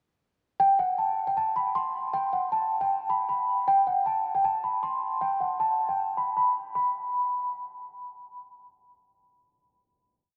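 A brooding, eerie trap piece at 156 BPM in a half-time feel, where a lone celesta plays a delicate, bell-like looping melody from 0.6 to 7.9 seconds, up front yet mellow and band-limited through analog chorus, delay and a low-pass filter, repeated like a sampled loop through the breakdown before a final note rings out at 6.8 seconds in a dreamy mix soaked in huge ambient reverb.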